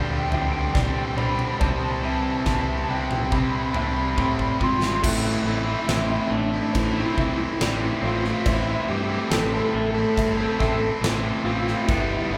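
Post-rock cut from a longer piece, cathartic and melancholic, moving at a slow, straight pulse through a build-up that peaks with a drum fill between 4.2 and 5.0 seconds before the music arrives on a minor chord. A dark, slightly broken-up lead guitar through a small old amp carries the melody, while a bright, distorted guitar and a picked overdriven guitar drive the riff together beneath it. A growling fingered bass with overdrive anchors the low end, and a huge acoustic drum kit, entering at 0.3 seconds, adds a fat snare, a punchy kick, toms and crash cymbal. In the background, a clean, twangy guitar with a scooped tone and a felt-muted upright piano play arpeggios, the piano soft and intimate with audible action noise and short sustain. The whole band sits in a wet, reverberant hall that gives the sound a spacious, church-like depth.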